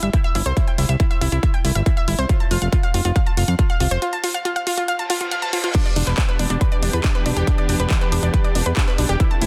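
Warbling, round analog pluck arpeggios with chorus, dub echo and pumping sidechain open this emotional, driving uplifting trance excerpt over a fat, detuned sawtooth bass, a punchy up-front electronic kick and a layered dance kit of handclaps, hi-hat and crash, moving from C to F before a break at 4.0 s. At 5.0 s an electronic reverse cymbal leads into a lush, distant bowed string section at 5.7 s on Em7, all in light digital reverb within a dense, heavily limited modern master.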